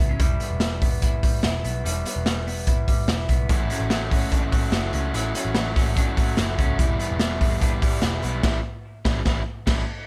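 Dry and close, this breezy, nostalgic slice of jangly indie pop at 146 BPM in A mixolydian opens with a bright, twangy, lo-fi electric guitar picking arpeggios over a round, foam-muted picked bass, joined at 0.2 s by a gritty, punchy garage drum kit with dark cymbals and a pumping small-room sound up front, while a crunchy overdriven guitar adds accompaniment from 3.5 s as the chords move between Em and A6 before the band hits an accent at 8.4 s.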